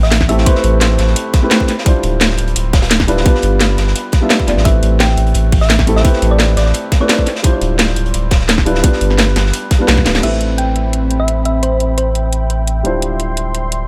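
A straight 4/4 groove at 172 BPM drives this rolling, lush liquid drum and bass excerpt in A minor, built on a tight, up-front electronic kick and a layered garage kit with a cracking snare, with a gritty, saturated breakbeat kit tucked in the background, a round sine sub bass holding the low end, a dark, mellow grand piano with dub echo moving through Am9, Dm11 and G7, and a tine-like FM synth pluck with chorus and digital delay dipping in for short melodic phrases, until a drum fill at 10.0 seconds and a band accent open a closing stretch where the breakbeat kit and kick drop out and a smooth, detuned analog pad with chorus enters at 10.2 seconds.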